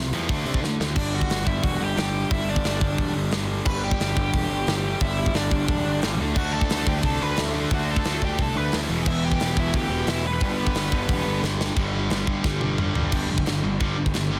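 A straight, driving 4/4 beat from an up-front acoustic metal drum kit, with its tight kick, medium-tuned snare, bright cymbals and big-room sound, powers this upbeat, rowdy punk rock clip cut from a longer piece, with drum fills leading into 1.0 s and again before the closing bars. Underneath, a growly, fuzz-laden picked bass pushes the low end while an overdriven electric guitar riffs in the background, joined by a tight distorted guitar that drops out after the opening moment and returns at 6.3 s, plus a very quiet, double-tracked semi-hollow guitar on the riff as well. A high-gain lead guitar with a touch of tape echo carries the melody from 1.0 s to 11.4 s over a dry, dense, heavily limited mix.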